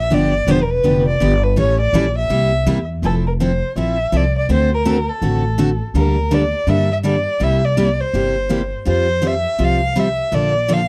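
A bowed violin with expressive vibrato and portamento carries the melody up front in this playful, lively jazz manouche piece at 165 BPM in 4/4, swung on the eighths. Bright, full-bodied picked steel-string acoustic guitar supplies the accompaniment, while a woody, thumpy pizzicato upright bass holds the low end as the harmony moves through G7, A7 and C7 before turning to F major at 3.0 s. The dry, close 1970s-style studio sound keeps all three instruments up front.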